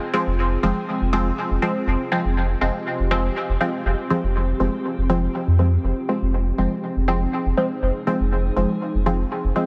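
A dark, granular cloud pad opens this deep, hazy dub techno excerpt at 0.0 seconds, its slow-attack chords blurred and evolving within their own built-in reverb, with a moving notch drifting through the detuned unison tone. A moment later a filtered dub chord stab arrives up front, muted and short in decay, its detuned sawtooth and triangle colour softened by chorus, phaser, cassette tape character and a dub echo, with a filter sweep shaping the hits. By 0.3 seconds a round sine sub bass settles underneath, sustained and mellow, given a gentle glow by tube saturation, and it is the loudest of the three parts. The groove sits in a steady four with a light swing on the sixteenths, and the harmony rests on a single minor chord throughout. A light room reverb surrounds the mix, and the master is dense and heavily limited in a modern style.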